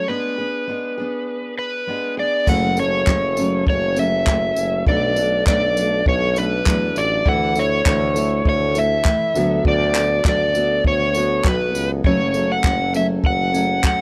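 Acoustic pop with a reflective, tender mood, moving at 100 BPM in 4/4 with a light swing on the sixteenths, in F# minor and tuned slightly below standard pitch. An overdriven slide guitar carries the melody from the start, its dark electric tone sitting up front, while a fingerpicked steel-string dreadnought supplies full-bodied accompaniment beneath it. At 2.5 seconds a clear, punchy tuba enters on the bass line, joined by a jazz kit played with brushes, whose dark cymbals, punchy kick, handclaps, tambourine and crash cymbal sound natural in a studio room. The harmony opens on a G# diminished chord before settling into F# minor, then moves through Bm7, Dsus2 and Bm7 over D before returning to F# minor. The recording is close and detailed with little reverb, and this passage is cut from a longer piece.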